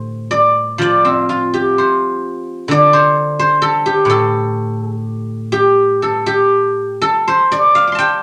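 A studio reverb with a 0.7 second decay surrounds a single guzheng, which sits up front with a silvery, ringing tone. This is Chinese traditional music for solo plucked strings, a brief cut from a longer piece in the D yu mode, tuned to A4 = 443 Hz. The acoustic guzheng is played with fingerpicks and spans from A2 up to D6, filling the whole 8.2 seconds on its own. The tempo hovers around 60-66 BPM in 2/4, but the rubato feel lets the pulse stretch and breathe. The mood is longing and contemplative, carried entirely by the one instrument.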